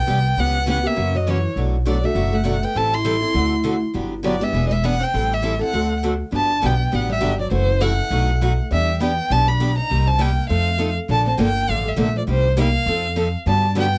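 Playful and swinging, this brisk cut from a longer jazz manouche piece moves at 202 BPM in G major, tuned slightly low. An expressive bowed violin carries the melody up front with vibrato, portamento and a soft attack, while a picked parlour guitar with fresh strings plays a warm second line. A second bright, boxy guitar, complete with finger squeak, supplies the accompaniment, and a woody, thumpy gut-string upright bass sits up front in a dry, close 1970s-style studio sound as the harmony travels from Gmaj7 through a brief turn to Bbmaj7 before settling home.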